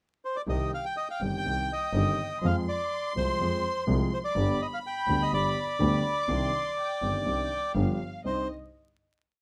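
A reedy, close-miked bandoneon carries a motif-based melody in period phrases up front through this short, tense and passionate tango at 124 BPM in C harmonic minor, played rubato over a milonga rhythm from a dark, mellow grand piano and a clear, bowed double bass, while a gut-string chamber violin section with light vibrato adds a counter-melody, the piece moving from Cm through Fm and G to a closing Cmadd9 chord at 8.2 seconds in a moderate club reverb with vinyl crackle.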